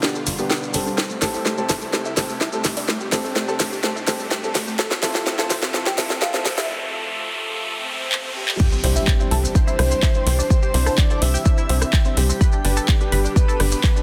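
Euphoric and hopeful, this progressive house excerpt at 126 BPM in C major builds for its first 8.6 seconds as a driving sawtooth sequencer bass, tight filter-plucked arpeggios, a lush detuned supersaw pad with sampler grit, and dark, mellow baby grand piano stabs pump under sidechain, while a house kit with cracking snare and metallic hats, grainy maracas, a riser, filter sweeps and drum fills push toward a short break. A round octave-layered lead with tremolo and tape echo slips in just before the drop at 8.4 seconds, and at 8.6 seconds the drop lands with an impact, a punchy up-front electronic kick and a very quiet, dry cocktail kit with a high-tuned snare, as an airy, dreamy second lead with soft attack joins behind it at 9.6 seconds over chords moving from Cadd9 to G. The dense, heavily limited mix sits in a small room with light reverb.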